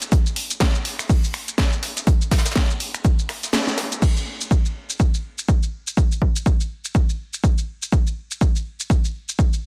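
A punchy, overdriven electronic kick drum drives this energetic, bittersweet house cut at 123 BPM with a swung sixteenth feel, alongside an up-front layered garage kit with a cracking, tape-warm snare, hi-hat, shaker, finger snaps and crash, while a brushed acoustic kit sits in the background until 3.9 seconds, and the kick drops out briefly at a band accent at 3.5 seconds before returning, all within light reverb and a dense, heavily limited modern master.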